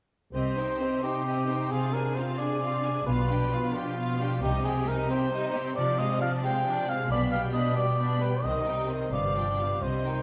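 A mellow, close-miked cor anglais sits up front with a second line in this restless, stormy classical passage in C minor, moving in 6/8 at 89 BPM, while a focused, vibrato-laden violin section carries the melody and a clear, distant second violin section adds another line in the background. Lush viola accompaniment, a smooth, even cello section and a ringing, fingerpicked concert harp playing arpeggios fill out the texture, and a rich double bass section is heard briefly at the start, then from 3.1 to 4.8 s and again from 7.1 s. The chords circle through Cm, Dm7b5/C and G7/B under a wet scoring-stage reverb, in an excerpt cut from a longer piece.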